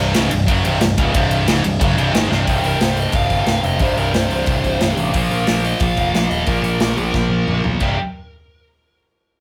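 Aggressive and relentless, this heavy metal excerpt charges at 180 BPM in C phrygian, driven by a bright, double-tracked high-gain rhythm guitar riffing up front over C5 and Bb5 power chords, a growling overdriven picked bass and a modern studio kit with punchy kick, bright cymbals and drum fills at 2.3 seconds and near the end. At 2.5 seconds a dark, high-gain lead guitar takes a solo through digital delay, sitting lower in the mix until about 7.8 seconds. The sound is a rough rehearsal-room recording with saturation and moderate room reverb, cut from a longer piece.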